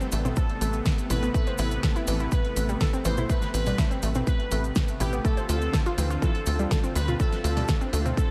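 A thick, detuned sawtooth pad sustains chords in the background of this driving, cinematic melodic techno excerpt, joined from the start by a warbling, wave-folded unison pluck playing arpeggios through tape echo, a deep house drum kit of congas, hi-hat and fat snare, and a grainy acoustic cabasa. A tight sequencer bass pumps up front from 0.1 seconds, and at 0.4 seconds a punchy electronic kick arrives alongside a juicy, resonant polysynth melody carrying chorus, phaser and analog delay. The chords move from Amadd9 to Dm7 at 5.2 seconds, and a huge ambient reverb leaves the mix dreamy and soaked.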